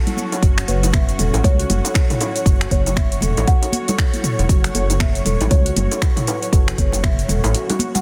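Spiritual and earthy, this afro house excerpt moves at 118 BPM in F# minor with a swung 16th-note feel, resting on a single F#m7 chord as veiled, con sordino muted strings hold sustained chords through vintage 12-bit sampler grit and sidechain pumping, while a woody rosewood marimba spins arpeggios through tape echo. An up-front, deep electronic kick arrives at 0.4 s alongside a rumbling, detuned saw bass with its own sidechain pumping, over a tape-toned deep house kit of finger snaps, metallic hats, shaker and toms with soft clipping on the snare, plus high-tuned congas and tight bongos played with soft hands. From 0.7 s a mellow buzzing kalimba adds a hollow, fingertip-plucked melody in the background, all set in light reverb with a dense, heavily limited modern master.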